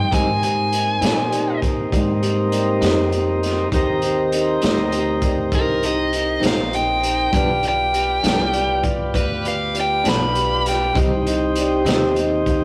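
A rough rehearsal-room recording places this mournful, brooding slow blues in a stone room with moderate reverb, in a short section cut from a longer piece and set in a straight 12/8. A dark, smooth, overdriven lead guitar carries the melody up front, its picked lines colored by tape echo until it drops out at 11.0 seconds. Beneath it, a tonewheel organ holds sustained, clean chords through a slow rotary speaker, while a mellow, boxy grand piano and a picked clean electric guitar with tremolo sit in the background. A woody, thumpy pizzicato upright bass anchors the low end, and a crunchy breakbeat kit of hi-hat, tight kick and medium-tuned snare sounds gritty and saturated, with a rolled-off top. The harmony moves from Abmaj7 to G7 at 7.3 seconds before settling on Cm.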